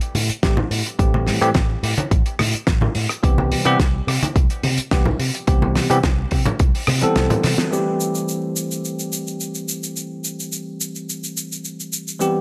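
A sensual, cosmic nu-disco excerpt in A minor at 107 BPM rides on a punchy, layered electronic kick and a dry, damped 70s drum kit with a fat snare, hi-hat, rim click and shaker, while soft-handed congas add a compressed, saturated sparkle. A picked electric bass, amped through tube saturation and an envelope filter, moves from Am7 to Cmaj7 beneath a bell-like tine electric piano that sits up front with subtle chorus and tape echo, and the mix carries light small-room ambience. The kick drops out at 7.2 seconds, and the congas and bass fall away around the drum fill at 7.4. A band accent follows at 7.6, after which the kit and electric piano carry on over Am7.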